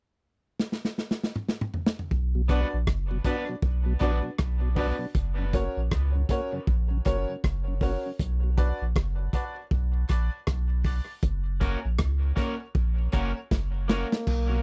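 Dub reggae at 79 BPM in B minor, hypnotic and heavy, this excerpt opens with a crunchy, saturated breakbeat drum kit playing a fill at 0.6 seconds before a deep, round sine sub bass enters at 2.1 seconds beneath a Bm to F# progression. A mellow tonewheel organ with slow rotary speaker, a woody, slightly detuned upright piano stabbing through dub echo, and a twangy electric guitar at the edge of break-up, washed in lush chorus and echo, fill out the groove, while a filter sweep runs from 5.2 seconds to the close of the section. The recording is dry and close in a 1970s studio style, with a clear trombone note with vibrato arriving at 13.9 seconds just as a final drum fill closes the section.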